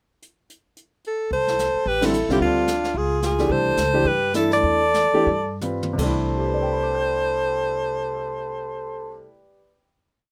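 Warm and playful, this short small-group swing and bop piece in C major moves at 154-220 BPM with a swung feel: brushed drums with dark cymbals and snare sweeps open a pickup bar, then a clear, up-front alto saxophone states a motif-based melody over a breathy, distant trumpet harmony line mostly in thirds, a woody pizzicato upright bass in two-feel and an upright piano's polished, syncopated quartal comping, with a band accent at 2.0 seconds and a slowdown and drum fill leading into a held final chord at 6.0 seconds, in a dry, rough home-demo mix.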